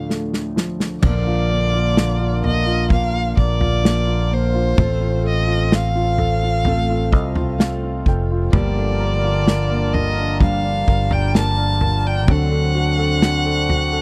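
An expressive bowed violin with vibrato, portamento and a slapback echo carries the melody of this melancholic, heartbroken pop ballad at 64 BPM, over a natural grand piano with deep bass that adds a fill from 6.7 to 8.5 seconds, dark fingerpicked steel-string guitar arpeggios in the background, and a punchy, up-front small-room country drum kit that opens with a fill before a round fingered electric bass and a reedy, breathing pedal harmonium holding chords enter at 1.0 seconds, captured in a dry, close 1970s-style studio sound in this passage cut from a longer piece.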